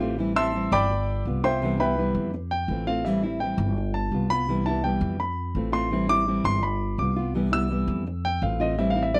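A dry, close 1970s-style studio sound with light reverb frames this brief, danceable Latin excerpt in C major at 168 BPM, moving in a straight 4/4. The polished, present grand piano takes the solo with arpeggios in its upper register over a cycling Am7, G7, Cmaj7 and Fmaj7 progression, while a full-bodied, thumb-plucked classical nylon-string guitar with fresh strings supplies accompaniment. Underneath, a woody, growly pizzicato upright bass on steel strings adds a dark, thumpy low end.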